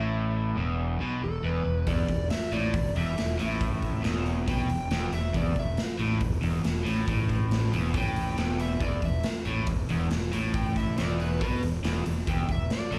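Smoky and brooding, this 13-second excerpt from a longer blues rock and southern rock power trio performance moves in a straight 4/4, captured as a live club gig through the venue's PA. A crunchy, double-tracked overdriven guitar riff sits up front in the low register alongside a dark, round fuzz bass, while an overdriven slide guitar played with fingerpicks carries the melody higher up, tinged by slapback echo. At 1.9 seconds a raw garage drum kit kicks in with a punchy kick, medium-tuned snare and hi-hat, its gritty, saturated sound pumping in a bright stone room with a rolled-off top.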